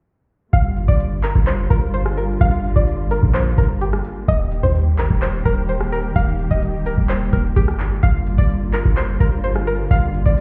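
A string-like resonator pluck, twangy and warbling with a chorus, phaser and digital delay on it, carries the melody from 0.5 seconds in this dark, eerie trap cut from a longer piece, moving in G minor at 128 BPM with a half-time feel. Beneath it, a lush symphonic string section holds bowed, vibrato-laden chords over a progression from Gm7 to Eb at 4.3 seconds and back to Gm7 at 8.0 seconds. A deep, boomy 808-style bass with a sine core and fast, decaying notes sits up front. A booming analog drum machine supplies a deep kick, metallic hi-hats, handclaps and rim clicks with a tape-warm character. The whole mix sounds muffled, as if heard through a wall, with a stone-room reverb and little other ambience, and all four parts play together until 10.4 seconds.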